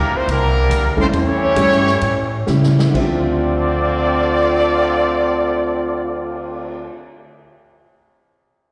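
Swinging and sultry, this big band swing passage in D minor, cut from a longer piece at 124-145 BPM, slows over its opening bars as an up-front, vibrato-rich trumpet section carries the smooth-topped melody over a bright, present trombone section's second line and a woody pizzicato upright bass, while a roomy drum kit with punchy kick, ride and crash cymbals plays a fill at 2.5 seconds that leads into the Dm11 section at 2.9 seconds, a warm grand piano accompanies from 1.0 second, slapback echo touches the horns and piano, and the whole sounds like a live gig heard through the venue's PA in recital hall reverb.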